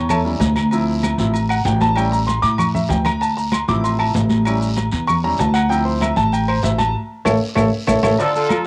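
This short excerpt has the intimate feel of a home cassette recording with light reverb, and its upfront baby grand piano carries a worn tape character, audible action noise and a short sustain. It is a passionate, danceable salsa in D minor at 193 BPM, in a straight 4/4. The piano takes a bright solo over an alternating A7 and Dm7 progression. A growly, woody pizzicato upright bass with steel strings sits up front. Behind them, high-tuned congas struck with hard hands, ringing agogo bells and timbales, dry claves, a raspy guiro and grainy maracas keep the groove busy, with two drum fills along the way. A band accent lands on an A chord at 7.0 seconds, and at 8.2 seconds a punchy, brilliant trumpet section bursts in, backed by a distant, roomy saxophone section with light vibrato that carries the same tape tone as the piano.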